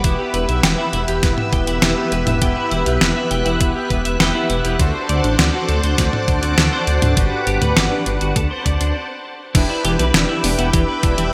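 Moody and cinematic, this synthwave excerpt moves at a steady, straight 4/4 pulse in a bright, 1980s-style digital production with a moderate plate reverb. A lush, vintage string machine holds sustained chords through a sidechain pump, while a clean, twangy electric guitar picks compressed arpeggios through chorus, filtering and delay. Bold, nasal analog synth brass punctuates the harmony with chorused stabs, and a deep, rumbling detuned saw bass sits up front beneath them, dark and saturated. A sampler-style drum machine adds a fat snare, hi-hat, crash and toms treated with gated reverb, alongside a thumpy electronic kick. The chords move from Em through D7 and Gmaj7 before a brief stop at 9.0 seconds, after which a slightly broken-up electric guitar enters in the background at 9.5 seconds with a dark, fingered riff over Em7.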